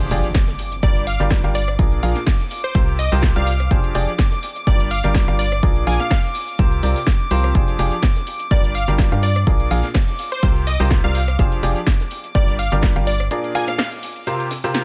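A small-room sheen and a steady sidechain pump give this soulful, energetic piano house cut its breathing, club-ready sound at 125 BPM in 4/4, with a light swing on the sixteenths. A bright, woody upright piano with audible action noise and a slightly detuned edge drives the riff through a delay. Beneath it, a hollow, organ-like FM bass with a fast, decaying attack holds the low end until the break at 13.3 seconds. A rich chamber violin section with gut-string tone and light vibrato sustains chords around the cycle of Fm69, Gm7, Bb7 and C7sus4. From 0.8 seconds a catchy, detuned sawtooth unison lead with a filter sweep and vibrato carries the melody through its own delay. The up-front analog kick thumps under a punchy drum machine's snare, rim click, hi-hat and tambourine, while a very quiet, dry reggae kit adds a high-tuned snare and shaker, and a background electronic impact opens the passage.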